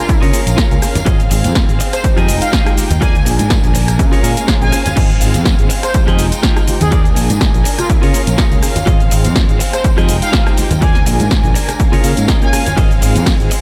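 Light reverb and sidechain pumping on most parts give this joyful, funky slice of filtered disco house its breathing lift, with an overdriven, punchy electronic kick up front and a punchy, overdriven analog drum machine adding snare, hi-hat, ride, crash, rim click and cabasa, while ringing tambourine and hard-handed congas sit close and dry in the background. A dark, round fingered bass and smooth, bowed violin chords anchor a repeating cycle of Db6, Ab6, Fm9 and Bb7, with a mellow, phased tine electric piano and a bright, twangy clean guitar riff carrying 12-bit sampler grit tucked behind. Bold, fat analog synth brass carries the melody with chorus, tape colour and delay, and the guitar plays a fill from 4.0 to 5.0 seconds as a very quiet electronic swell appears at 4.3 seconds.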